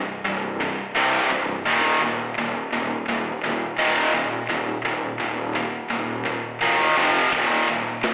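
A heavy, double-tracked high-gain guitar riff opens this relentless heavy metal excerpt at 85 BPM, its bright, distorted tone carrying slapback echo over a growly, overdriven fuzz bass that enters at 0.3 seconds, moving through C5, Eb5 and F5 power chords before a punchy, airy studio drum kit of kick, snare and ride arrives at 7.3 seconds, all heard in a live gig through the venue's PA with recital hall reverb and a telephone-like sound.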